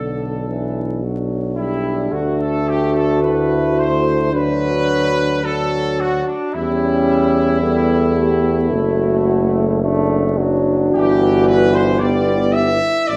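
A full brass band opens together in a tender, hymn-like classical passage at a slow 55 BPM in 4/4, with a rubato feel. A punchy, tight trumpet section carries the melody from a distance, while a dark French horn section sits in the background with a second line. A close-miked euphonium and a roomy trombone provide accompaniment above a warm tuba bass that stands up front, every voice shaded with light vibrato, in a moderate recital-hall reverb with vinyl crackle across this 13.2-second passage cut from a longer piece.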